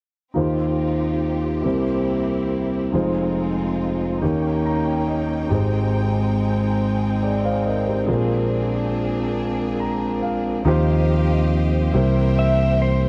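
A deep-voiced grand piano sits up front in this hopeful, reverent gospel passage in a slow, lilting 6/8, carrying the accompaniment and adding fills at 4.2 and 9.4 seconds. Behind it, a lush, bowed string section holds bright, intense chords with vibrato, while a soft, flute-like tonewheel organ with percussive attack sustains mellow chords in the background, turning slowly through a rotary speaker with chorus vibrato. The harmony moves through rich sixth-ninth, seventh and ninth chords before returning to the opening chord as a new section begins at 10.7 seconds. There a round, punchy electric bass enters, dark and amped, and at 12.4 seconds a clean, compressed lap steel guitar slides in with a short melody shaped by volume swells. The sound is dry and close, in the manner of a 1970s studio, with a light touch of reverb, and the passage is cut from a longer piece.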